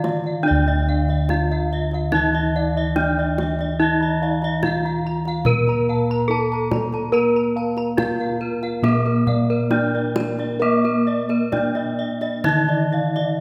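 Uneven beats in a 4/4 pulse shape this stately, hypnotic Javanese gamelan passage, cut from a longer piece. A bright bronze metallophone struck with a horn mallet carries the melody up front, its paired tuning producing shimmering beats. Beneath it, a second metallophone plays a mellow, dark, smooth accompaniment with padded disc mallets, while round-toned bossed gongs and an airy, ringing metallophone weave high arpeggios. A mid-forward set of bossed gongs anchors the bass with a beating tone, and a tight kendang played with soft hands keeps time, all within a moderate concert hall reverb.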